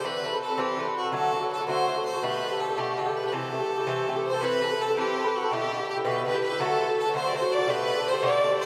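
In 6/8 at 110 beats per minute with a straight feel, this brief cut from a longer Celtic folk piece in A dorian moves with a dark yet lively, driving energy. An acoustic Irish bouzouki sits up front from the start, its picked double strings giving a mellow, metallic accompaniment over chords that shift each 1.1 seconds through Amadd9, D, Gadd9 and Am7. Alongside it, a single bowed fiddle carries the melody with a bright, biting, intense tone and light vibrato, also placed up front. At 4.2 seconds a second bowed fiddle enters in the background with a rich, smooth and even second line, also touched with light vibrato, as the harmony returns to Amadd9 and then turns toward G6 and D. The whole passage is bathed in a wet cathedral reverb with a 5.7-second decay, setting the players in a vast, echoing space through to the close at 8.7 seconds.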